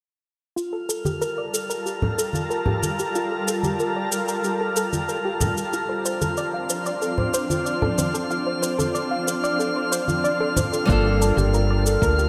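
A straight 4/4 pulse at 93 BPM opens this sunset chillout excerpt in G minor, with a produced, tape-warm cabasa ticking from 0.6 seconds and soft-handed, low-tuned congas joining at 1.0 seconds. A soft, round pluck plays arpeggios through lush chorus and digital delay, a filter sweep running across it, while a shimmering, ethereal pad holds detuned chords with an octave-up sheen and a drifting glassy texture hangs high above. The harmony moves from Gm9 to Dm7/F and back to Gm9, and the mood stays warm and smooth. At 10.9 seconds a fingerpicked nylon-string guitar, a dark, punchy fretless electric bass placed up front, and a soft electronic kick arrive together. The bright 1980s-style digital production sits in a lush hall reverb that gives the whole a spacious, glowing finish.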